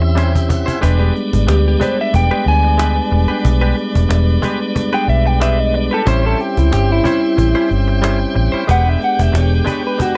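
Laid-back and swaggering, this straight-eighth soul blues moves at 92 BPM in 4/4, cut from a longer piece and shifting between A7#9 and E7#9 chords. A dark, round, foam-muted fingered bass sits up front beside a snappy cajon played with hard hands, while a piping tonewheel organ through a slow rotary speaker opens with a fill alongside the drums. A brilliant, tight horn section holds sustained chords with vibrato and octave doubling, and a bright, twangy clean guitar recorded direct adds compressed stabs; from 1.5 seconds an electric guitar through a small old amp carries the melody with a slightly broken-up, lo-fi tone, under light reverb.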